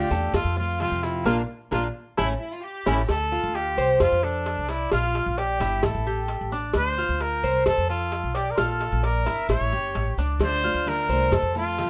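Sultry and warm, this short cut from a longer Cuban son and guajira piece moves in a straight four-time feel. A breathy, whispered trumpet carries the melody up front, with a soft attack, gentle vibrato and a vintage, intimate pop-style tone set in plate reverb. The Cuban tres spins mellow, metallic arpeggios on its doubled strings, while a woody, thumpy pizzicato upright bass with gut strings sits up front beneath it. A round, low-tuned cowbell struck with hard hands keeps time, with grainy maracas in the background. A bright, full-bodied picked steel-string guitar picks out accompaniment at the start, drops out at 3.0 seconds and returns at 10.4 seconds. A dark studio violin section adds a brief bowed second line with portamento from 2.4 seconds, during an early band accent, all within a dark, lightly reverberant production.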